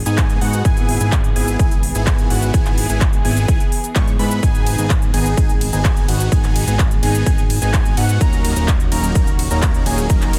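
Festival progressive house at 127 BPM in G# minor, this emotional, powerful fragment of a longer piece moves from G#m through E/G# and back to G#m before closing on D#m7. A punchy, overdriven electronic kick sits up front, backed by a layered dance kit of handclaps, crisp hi-hats, ride cymbal and shaker, also driven into overdrive. Beneath it, a fat analog bass blends detuned sawtooth, square and sine tones with wave-folding and a filter pluck, pumping through sidechain. Huge, lush supersaw chords carry the riff with a moving notch and tape echo, while a thick, mellow unison lead spins arpeggios high above, colored by a sub octave, vibrato, subtle chorus and the same echo and pumping. Very quiet and intimate, a dark chamber string section holds sustained bowed chords sul tasto with light vibrato, all set in a dry space and a dense, heavily limited modern master.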